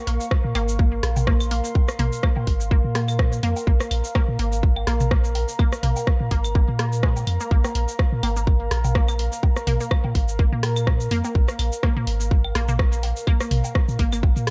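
A swung sixteenth-note groove in four drives this sparse, clinical minimal techno excerpt, anchored by a tight, overdriven electronic kick up front and a layered, overdriven garage kit of cabasa, hi-hat and rim click, while a booming, tape-warm analog drum machine adds claves, rim clicks, toms and woodblock from 0.6 seconds. A deep, punchy sine sub bass with a pitch-drop attack pumps against the kick, and a juicy, squelchy sawtooth blip pluck repeats a short, resonant riff through chorus, phaser and delay with a filter sweep. Behind them, a warbling, nostalgic lo-fi pad with a slow attack hovers over a single Bb7(no3) chord, all set in a dark digital ambience.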